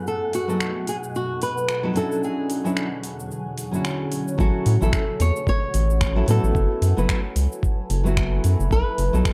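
A dark, lightly reverberant production frames this sunny, relaxed sunset chillout excerpt at 111 BPM in A major with a swung 16th-note feel, where a fingerpicked nylon-string guitar with digital delay and a shimmering, ethereal pad with chorus and phaser support an up-front flamenco guitar melody treated with tape echo, a deep house kit of finger snaps, metallic hi-hats and shaker adds overdriven bite, an airy, wind-like tuned noise texture breathes in the background until 4.4 s, and at that point a round analog bass and a thumpy, gritty electronic kick drum join in.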